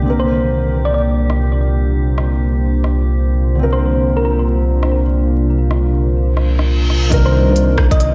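Future garage at 136 BPM with a swung 16th-note feel, wistful and melancholic, where a soft felt-muted upright piano with lush chorus and delay sits over a deep, warbling ambient pad under a filter sweep and a rumbling, detuned saw bass that sits up front, all three pumping to the sidechain, while a glassy harmonics texture drifts in the background. A round, tine-like synth pluck with chorus and delay plays brief melodic phrases, smooth electronic hi-hats and rim clicks enter at 1.3 seconds, and a reverse cymbal leads into a tight electronic kick at 7.1 seconds as the harmony moves from Bbadd9/C to Cm9. The dreamy mix is soaked in hall reverb and vinyl crackle, and this excerpt is cut from a longer piece.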